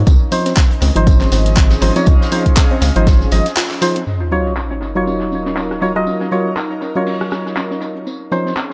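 A swung 4/4 groove at 120 BPM drives this hypnotic, late-night deep house passage in Eb dorian, cut from a longer piece, with a deep, tape-warm electronic kick sitting up front until 3.2 seconds and a small-room electronic kit of cabasa, handclaps, hi-hat and rim click running under low-pass filtering and analog delay. Far behind it, a natural acoustic brush kit adds hi-hat, a high-tuned snare and tambourine, while a rubbery, hollow square bass bounces up front until 3.4 seconds. Dark, percussive organ stabs with chorus and dub echo pump against the sidechain over a Dbmaj9 that moves to Ebm9, and a soft, round pluck traces arpeggios in the background through cassette-tape coloring, dub echo and a filter sweep that begins at 4.1 seconds. An airy, breathy pad with a slow attack and long release floats alongside, breathing with the same sidechain pumping. After a brief break and band accent at 3.6 seconds, an impact and a sub drop and riser mark the second section, all set in an echo-heavy mix with light digital ambience.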